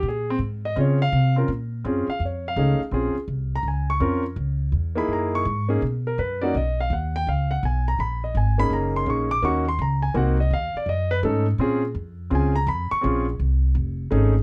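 A concert grand piano and a pizzicato upright bass open together on a Bb minor 9 chord, setting a cool, moody jazz swing at 166 BPM in 4/4. The piano carries the melody as a solo throughout, ranging from A3 up to D6, with an intimate, polished tone, deep low end and long sustain, and its action noise is audible. The upright bass sits up front beside it, woody and acoustic on steel strings, moving between F1 and Db3. The harmony drifts through rich, shadowy colours such as an altered F7, Gb13, Gb6/9 and a half-diminished C chord before settling back on Bb minor 9 and turning again to F7alt at 13.8 seconds. The dry, close sound recalls a 1970s studio, and this short excerpt of a longer piece ends at 14.4 seconds.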